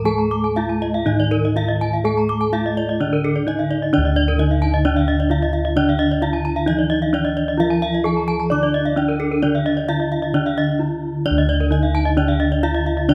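Gamelan music in a brilliant, shimmering mood, this cut from a longer piece sets a dark, smooth bronze metallophone melody up front, struck with a wooden mallet over a soft, mellow metallophone accompaniment played with padded disc mallets and a bass line of round, beating bossed gongs. Two bright metallophones struck with horn mallets spin arpeggios above, one of them airy, and their paired tuning gives the ensemble its shimmering beats. The sound is close and detailed with light reverb, and the music moves into a new section at 3.9 seconds.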